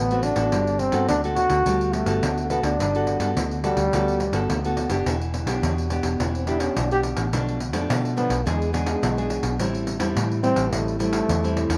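A warm trombone carries the melody from the first moment in this festive, sunny fragment of samba and choro, joined at once by fingerpicked nylon-string guitar in a classical style and a dark, round electric bass with a vintage, foam-muted, amped tone. A jingly pandeiro enters at 0.1 s, its acoustic sound band-limited and old-fashioned, setting a straight 4/4 pulse at 106 BPM. The opening stays in G major, moving from D7 to Gmaj9 with the trombone sitting between G3 and G4. At 5.1 s the music turns to E minor for a trombone solo in jazz style, full of vibrato and scooped notes over a progression through Em7, Bm7b5, E7 and Am7. A moderate echo-chamber reverb and studio ambience wrap the ensemble.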